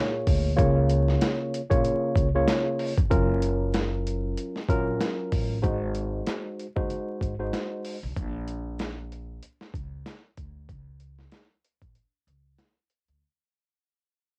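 A worn, slightly out-of-tune tine electric piano with cassette-tape colour opens this gritty, moody boom-bap hip-hop excerpt, joined at 0.3 seconds by an overdriven, sampler-style drum kit with a thumpy kick and medium-tuned snare and a woody, dark pizzicato upright bass. The piano drops out at 8.0 seconds, leaving drums and bass for a break from 8.2 seconds within a fade that begins at 3.1 seconds, all in a dry, crackling home-cassette sound.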